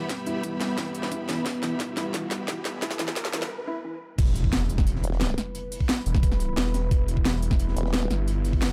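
Dark technical drum and bass at 176 BPM in E minor, this short cut from a longer piece moves from a tense build-up into an aggressive drop at 4.2 seconds. A deep, moody ambient pad holds sustained chords throughout, its warbling vintage tone thickened by chorus and reverb and pumped by sidechain, while a thick, detuned saw bass with overdrive and chorus anchors the low end. Early on, a distant, biting string section adds intense texture in the background until 3.5 seconds, and a felt-muted upright piano plays soft, mellow arpeggios coloured by 12-bit sampler grit and dub echo, with a filter sweep running across the build. A drum fill and a background riser push toward a brief break, then an electronic impact lands as the drop arrives. Through the drop, the knocking layered kick and up-front kit with cracking snare and crisp hats, present from the start, drive hard. A very quiet, gritty breakbeat kit with a high-tuned snare sits beneath them, and a formant-sweep wobble bass cuts through in short, compressed bursts. 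A small, dark room reverb wraps the production in a close, shadowy space.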